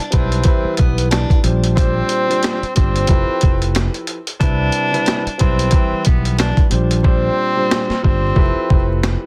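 A bright tenor saxophone opens this brief cut from a longer boom-bap hip-hop track, singing a jazz-style solo line with soft attack, vibrato and a touch of delay, while a dark, vintage baby grand piano with long sustain voices Cmaj7, Bb69 and Fmaj9#11 chords in C major. Underneath, a round fretless electric bass with analog chorus and a gritty, tape-warm, up-front sampler-style kit, with a thumpy kick and high-tuned snare, ride a swung 91 BPM groove, and the hi-hats drop out at 7.0 seconds. Light reverb, vinyl crackle and a dense, heavily limited master frame the nostalgic yet confident mood.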